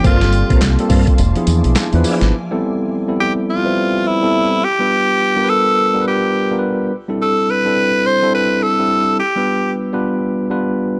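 New jack swing R&B at 105 BPM in A minor with a swung sixteenth-note feel, punchy and confident, where a raspy tenor saxophone with scooped notes carries the melody over a clean tine electric piano, while a gritty, pitched-down boom bap drum kit with thumpy kick, handclaps and tambourine, a round, dark dub fingered bass, a glassy FM pad in the background and smooth tonewheel organ stabs through fast rotary speaker and tape echo drop out by 2.3 seconds, leaving the saxophone and electric piano to carry on in a dry, close sound.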